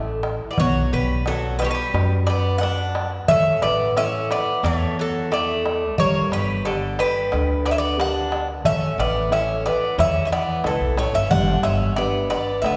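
A hopeful, relaxed Greek folk fragment from a longer piece opens with a metallic lead bouzouki up front, a second double-strung bouzouki line beneath it, classical thumb-plucked nylon-string guitar and a woody, prominent pizzicato upright bass, with a small clay-shell darbuka joining at 0.2 seconds as the straight 4/4 groove speeds up, bathed in the long reverb of a church or concert hall.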